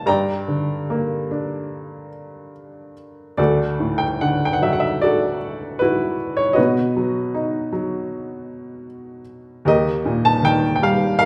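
A clear upright piano plays alone throughout this brief lyrical classical passage, cut from a longer piece, its woody, intimate tone sitting up front with audible action noise and a short sustain. The mood is dark and wistful, moving in 4/4 at roughly 71-79 BPM with a rubato feel. Though in D major and tuned to A4 = 441 Hz, the harmony drifts from G minor to Dadd9 at 3.4 seconds, then to B and on to E-flat at 9.7 seconds. The playing spans from D2 up to B-flat 5 within about 11 seconds. A wet recital hall reverb, with a decay of 1.3 seconds in a church or concert hall space, surrounds the natural piano sound.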